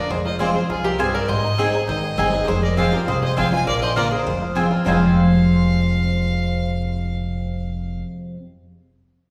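Driving straight 4/4 bluegrass with a haunting minor cast, this short cut from a longer piece sets a bright, full-bodied picked dreadnought guitar up front beneath a clear bowed fiddle and a twangy fingerpicked banjo sharing the melody, a nasal metallic slide resonator guitar playing a second line, round double-string mandolin stabs entering at 0.4 seconds, and a woody, thumpy pizzicato upright bass, all bathed in the lingering reverb of a church or concert hall.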